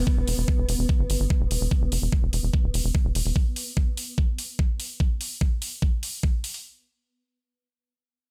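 A driving 146 BPM pulse in E minor opens this intense psychedelic trance excerpt, with an overdriven, knocking electronic kick up front and bright, overdriven hi-hats in a small room running to 6.6 s, while a tight, saturated sawtooth sequencer bass and a swarming, detuned drone with built-in reverb and sidechain pumping both ride filter sweeps before dropping out at 3.3 s and 3.4 s respectively.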